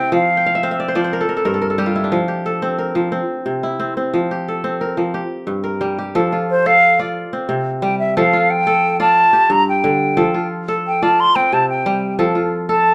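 Captured live in one room with a moderate large-studio reverb, this flowing, joyful fragment of West African traditional music in a straight 12/8 sets a bright, ringing, fingerpicked kora playing arpeggios throughout, including a fill from 0.4 to 2.1 seconds, beneath a pure, hollow concert flute that sounds briefly at the outset and returns up front at 6.5 seconds for a tongued solo with vibrato.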